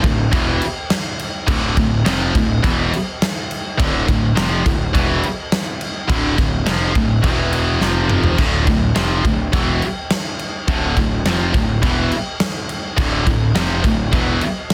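This heavy metal excerpt from a longer piece is heavy and relentless, moving at 104 BPM in a straight 4/4 in D minor. A double-tracked, high-gain electric guitar sits up front with a picked, distorted riff in its low register. Beneath it, a picked electric bass adds a growly, overdriven fuzz tone, mixed both direct and amped. A big acoustic rock kit in a large room drives the music with a punchy kick, a medium-tuned snare, toms, and bright crash and splash cymbals. The harmony holds on D minor, then moves through E5 and F5, and the drums play a fill from 7.8 to 8.4 seconds before the return to D minor. Studio reverb and a dense, heavily limited modern master give the track a loud, compact weight.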